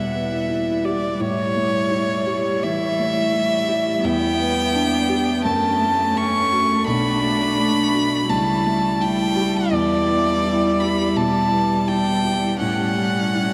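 Melancholic and longing, this 13.5-second excerpt of neoclassical piano and strings drifts at a rubato 84 BPM in E dorian, with a rich, up-front solo violin singing the melody high through tape echo over a cello's second line, a dark viola and a felt-muted upright piano whose analog chorus and audible action noise sit beneath, all soaked in a huge, dreamy reverb.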